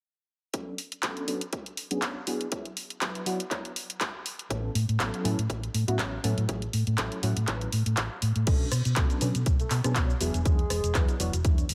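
Groovy and nostalgic, this filtered disco house clip moves at 121 BPM in 4/4 with a light sixteenth-note swing, sitting in B dorian and cut from a longer piece. From the start, a funky polysynth comp of sawtooth and square waves plays plucky, mellow chords treated with chorus, phaser, sidechain pumping and a low-pass filter. Alongside it, a punchy, overdriven electronic kick and an up-front house kit of crash, handclaps, hi-hat, rim click and shaker drive the groove, both re-recorded in a large room, with pumping on the kit's hats, cymbals and percussion. A dark, round hollow-body electric bass joins at 4.5 seconds, amped and up front, with its own pumping and low-pass filtering. At 8.5 seconds the second section begins, and a tight jazz-style horn section with light vibrato and octave doubling adds a brief melody. Filter sweeps run across both sections, the chords cycle through Bm7, E7, A69 and F#m7/A, and a digital ambience wraps the mix.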